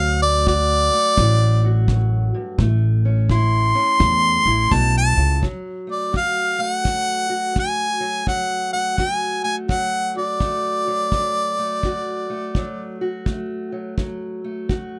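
A bright, up-front harmonica with light vibrato and scooped notes takes a jazz-style solo through the opening 5.4 seconds of this soulful, rollicking acoustic country blues excerpt, backed by a dark, boxy fingerpicked parlour guitar, a woody, thumpy pizzicato upright bass that stops at 5.4 seconds, and a tight, airy kick drum played with brushes, in a recording with light reverb and close, detailed microphones.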